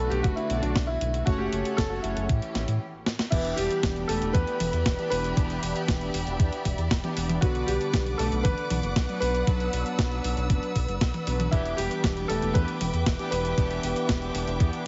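Italo disco at 117 BPM in E dorian, bittersweet and nostalgic, with a clear grand piano carrying the melody through tape echo over sustained chords from a smooth, vibrato-rich studio string section and bold, detuned synth brass stabs coloured by chorus and gritty 12-bit sampler texture. A round, deep analog bass with a ring-modulated, evolving tone anchors the low end, while an overdriven, thumpy electronic kick and a sampler-style drum machine with snare, hi-hat, cabasa, toms and crash drive the straight 4/4 groove, pausing for a brief break at 2.8 seconds and a drum fill at 3.1 seconds before the chords settle on Em7 and Bm. The sound is heavily compressed and radio-like with dulled highs and light reverb, and this passage is cut from a longer piece.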